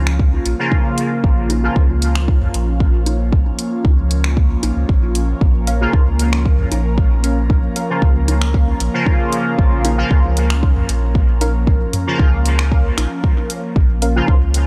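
A dry, gritty hardware recording wrapped in digital ambience gives this short dub techno cut a hazy, nocturnal air in a straight 4/4, sitting on a single minor chord throughout. A breathy, airy pad holds sustained chords with a slow attack and long release, treated with chorus, phaser and sidechain pumping, while a clean sine sub bass sits deep and up front, its transformer saturation and pumping giving it weight. A deep electronic kick, also up front, anchors a layered deep house kit of finger snaps and dark hi-hats in studio reverb, with very quiet, tape-softened electronic bongos and toms entering at 0.7 seconds. A juicy, warbling polysynth with a resonant filter sweep fires bright stabs briefly near the start and returns at 5.8 seconds, colored by chorus, phaser, cassette tape and dub echo. From 5.7 seconds a crisp, mellow wavetable chord stab plucks a decaying riff in the background, trailing its own dub echo and pumping.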